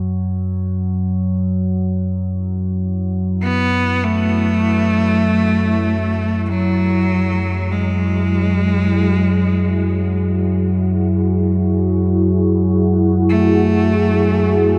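Unfolding in free time, this dark ambient drone piece in F# minor feels cavernous and desolate, a short passage lifted from a longer work. A deep, ominous, rumbling synth drone sits up front and fades in gradually across the whole passage, its sawtooth-edged tone carrying built-in reverb. At 2.9 seconds a moody pad enters with sustained chords, thickened by detuned unison voices, a sub octave and chorus, its slow attack and long release blurring each chord into the next. A clear, focused cello follows at 3.4 seconds, one close bowed player carrying the melody with vibrato, set up front and trailed by a diffuse ambient delay. The harmony rests on an F#sus2 chord, and the dark, warm production wraps everything in a huge, wet reverb with an eight-second decay.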